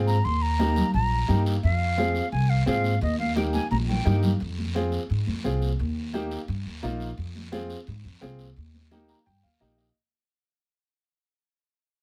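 A clear, open upright piano and a growly, woody pizzicato upright bass start this driving, danceable cumbia excerpt at 173 BPM, alternating between Eb and Fm, while an airy, reedy concert flute carries the tongued, straight-tone melody over raspy guiro and bright, distant congas softly played in the background. A percussion fill at 3.5 seconds leads into the second section, where the flute has dropped out and the music fades from 4.4 seconds. A piano fill at 8.9 seconds closes the passage, with the piano and bass close and detailed up front in a light reverb.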